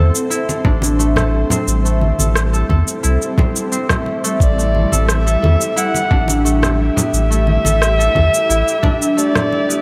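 Light small-room reverb frames this earthy organic downtempo cut at 88 BPM in A dorian, where a bright granular cloud pad with sidechain pumping and fingerpicked concert harp arpeggios with tape echo ring over a deep, round sub bass and a soft, tape-warm electronic kick. Electronic cabasa and rim click, hard-handed congas and a barely audible metallic singing bowl fill out the groove, and from 4.4 s a dark, woody kamancheh adds a bowed melody with vibrato and portamento as the chords shift from Am7 to Em/A.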